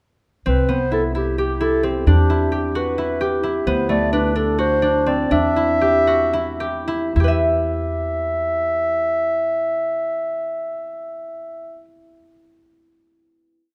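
A light reverb surrounds this short, complete chamber piece in E minor, where a dark, smooth-topped clarinet sings a free classical solo over a ringing, fingerpicked harp ostinato and a woody, thumpy pizzicato upright bass holding sustained low notes, all three up front. Hypnotic and pensive, it moves in an uneven 7/8 at 208-262 BPM in eighths, its harmony drifting through Cmaj7, Em7 and D7, then back to Em7 as it slows down from 3.7 s. At 7.2 s it settles onto a final E minor chord that rings until about 12.0 s.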